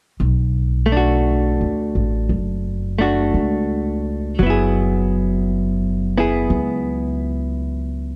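Romantic and late-night, this short cut from a longer jazz piece moves at an unhurried swing, with a woody, thumpy pizzicato upright bass entering at 0.2 seconds and a clean, dark, picked hollow-body electric guitar joining at 0.9 seconds, both sitting up front. The pair moves from Bm7 to F#9sus4 at 4.4 seconds, the guitar's compressed tone framed by light reverb in a dark, warm production that carries lossy compression artefacts.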